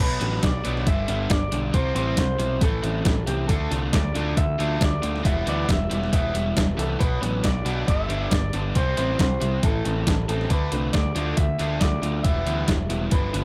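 Indie rock at 137 BPM in 4/4 with a cool, moody mood, cut from a longer piece: a twangy, slightly broken-up guitar through a small old amp carries the melody over a bright raw garage guitar riff and a growling, picked, overdriven bass. From 0.2 s a compressed, overdriven second guitar adds a riff through analog chorus, and a crisp, up-front 8-bit drum machine enters with a thumpy kick, medium-tuned snare and hi-hat, overdriven and re-recorded in a large room. The parts move through a repeating Bm, G6, C, Am, Dmadd9, Em progression under light reverb.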